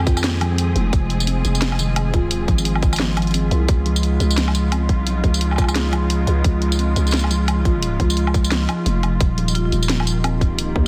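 Half-time drum and bass with a dark, heavy mood, this short excerpt moves over a chord progression from Fm to Db and then Eb. A tight, up-front electronic kick and a layered kit with a cracking snare, hi-hat, tambourine and woodblock sit in small room ambience, while a growling, buzzy 808-style bass with a fast attack and decaying notes pushes forward in the low end. Muted strings hold veiled, con sordino chords at a distance, carrying vintage 12-bit sampler grit and sidechain pumping. In the background, a woody kalimba plays plucked arpeggios through delay, and an eerie, metallic, inharmonic drone sustains with chorus and reverb. A bright marimba struck with hard mallets adds a brief touch at F4 with delay at 9.5 seconds, and the dense, heavily limited master keeps the whole mix thick and loud.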